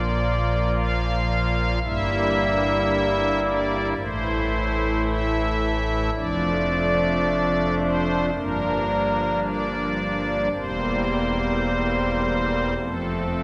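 A wet church reverb surrounds this reverent, majestic classical chorale-style excerpt for solo pipe organ on soft, shimmering string celeste stops, moving at a rubato 55 BPM in 4/4 with a romantic voicing that reaches from deep lows at E1 up to F5, passing from Bb through Am, Dm/F, Gm7 and C7/E to settle on F at 12.8 seconds, slightly below standard pitch at A4 = 437 Hz.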